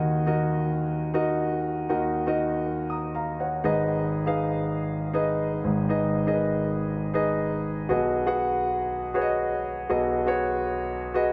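Urgent and moody, this short pop excerpt at 120 BPM in 4/4 sets a solo grand piano in Eb minor, tuned to A4 = 438 Hz, ranging from Ab1 up to Eb6 across its 11.3 seconds. The piano sounds polished and up front, with long sustain, digital delay and a moderate plate reverb that lends the space a lingering 2.6-second tail. Its chords move from Ebm to Abm at 3.6 seconds and settle on B6 at 7.9 seconds.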